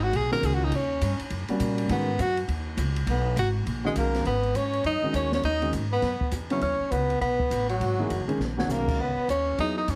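A tenor saxophone stands out in this moody, swinging small-group jazz, cut from a longer piece. Its up-front voice carries vibrato, subtone and scooped notes, and it takes a solo from the start until 4.3 seconds, set in plate reverb. A woody, pizzicato upright bass with steel strings also sits up front, while a baby grand piano adds open, long-sustaining accompaniment over chords such as a rootless Emaj7, D#7#9, G#m7 and C#m7. A breathy trumpet enters at 3.9 seconds as a mellow second line in the background, with scooped notes and a smooth top. The acoustic drum kit sounds dark and smooth in a small room, with dark cymbals, a medium-tuned snare and a punchy kick, and it plays a fill at 8.4 seconds. A moderate club reverb and a heavily compressed, radio-like sound frame the ensemble.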